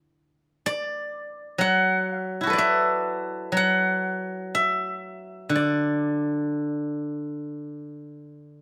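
A solo steel-string zither, played with fingerpicks and sitting up front, enters at 0.7 seconds with a silvery, ringing tone in this serene, pastoral piece of Chinese traditional music, a short fragment of a longer work. The playing moves with a free, rubato feel in four, and the zither carries a slapback echo. Recorded outdoors, the sound is dry and close, with little reverb around it.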